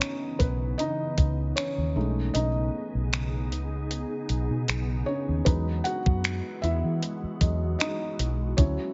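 Contemporary R&B at 77 BPM in E major, this dreamy, romantic excerpt has a lightly swung sixteenth feel, with a felt-muted upright piano featured up front. The piano's thick-felt, intimate tone carries audible action noise over C#m9, B13 and Emaj9 chords, while a glassy FM pad with slow attack, ensemble chorus and its own reverb sustains beneath, and a vintage foam-muted fingered bass, round and punchy, enters at 0.4 seconds. A clean 12-bit drum machine plays snaps, hi-hat and a thumpy, tape-tinged kick that drops out from 2.3 to 5.5 seconds, all set in a lightly reverberant mix with a dark top end.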